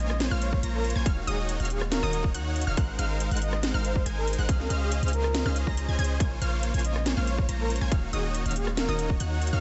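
A hard-clipped, overdriven electronic kick enters at 0.5 seconds and drives this dreamy, bittersweet half-time future bass fragment alongside a deep, boomy 808-style bass, a trap kit with a sharp snare, metallic hats and rim clicks, huge detuned supersaw chords, a bright unison pluck arpeggiating in the background, a very quiet ethereal pad, and a soft, breathy flute-like lead singing the melody with vibrato and dub echo, while sidechain pumping makes the lead, bass, pluck and supersaws breathe under light reverb.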